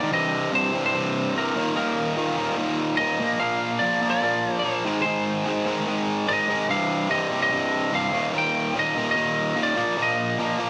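Rock in C minor at 146 BPM, driving and menacing, cut from a longer piece and lasting about 10.7 seconds. An overdriven electric guitar sits up front with a bright, double-tracked, picked riff low in its register, while a lightly driven lead guitar, dark, slightly broken-up and compressed, carries the melody high above it. The chords move from Cm through Eb5, Bb and Ab before returning to Cm, Eb and Bb, all within light reverb and a digital ambience.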